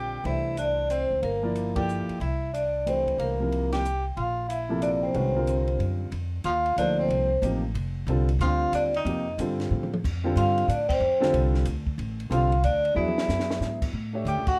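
A swinging 3/4 pulse at 184 BPM drives this hypnotic, spiritual modal jazz excerpt, cut from a longer piece, where a metallic, ringing vibraphone carries the melody over a mellow, distant tenor saxophone whose subtone line features scooped notes. A natural-sounding grand piano accompanies, a woody, up-front pizzicato upright bass anchors the low end, and a compact cocktail drum kit with dark cymbals, a high-tuned snare and a punchy kick adds fills around 9.7 and 13.0 seconds. Band accents punctuate the groove as the harmony moves from C7 through F13 and Dm to a closing A7, all in a dry space.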